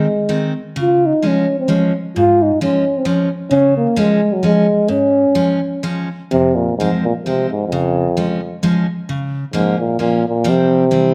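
A mellow euphonium carries the melody up front in a classical solo style, its smooth top voice singing over a bright, full-bodied jumbo steel-string acoustic guitar that supplies picked accompaniment throughout. This bouncy, festive alpine folk piece moves in 3/4 at 130 BPM with a swung, rubato feel, opening in Db major before turning to F harmonic minor at 6.3 s, where the chords move through Fm, Db and Bbm to a closing Csus4. A moderate recital-hall reverb and a dark production frame this short cut from a longer piece.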